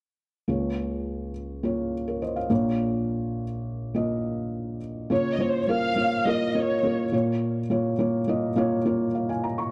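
Pop in Db major at 104 BPM, this uplifting, warm excerpt opens at 0.5 seconds with a felt-muted upright piano accompanying on a gentle Db6 to Bbm progression, its thick-felt mellow tone intimate and up front, with audible action noise. From 5.1 to 7.1 seconds, a dark studio violin section carries the melody, lush and bowed with expressive vibrato, portamento and a smooth top. A moderate spring reverb softens the dark production.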